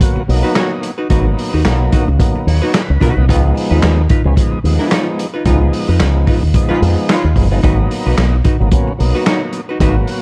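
Sly and funky, this 110 BPM groove in G# dorian rides a lightly swung 16th feel, led by an up-front, round and direct fingered bass with an envelope filter over a muffled, lo-fi vintage drum kit of punchy kick, medium-tuned snare, hi-hat and handclaps. A hollow-body jazz guitar adds dark, clean picked accompaniment while a thick, lightly overdriven tonewheel organ plays stabs through a slow rotary speaker and takes a fill at 2.2 seconds, as the chords move from a rootless G#m7 to C#9 and back. During a band accent from 5.5 seconds, a distant, roomy horn section appears briefly in the background at 6.7 seconds, and studio reverb gives the mix a dark, warm production.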